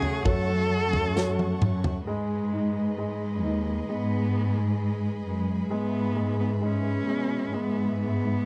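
A dry, close recording in a 1970s studio style, this heartfelt, hopeful pop ballad fragment moves at 66 BPM in 4/4, as a rich, focused solo cello with slapback echo carries the melody over a clear, polished baby grand piano, lush sustained chords from a studio string section, and a warm, bowed cello section playing the bass line with vibrato and portamento. A very quiet picked steel-string acoustic guitar plays arpeggios until 2.2 seconds, and a tight acoustic drum kit with a medium-tuned snare plays until 2.1 seconds, its kick, snare and toms moving through a fill from 1.2 seconds, marked by a brief jingly tambourine. The harmony shifts from F#m to G#m at 2.1 seconds and then to E/G#, while the strings and piano carry on to the end.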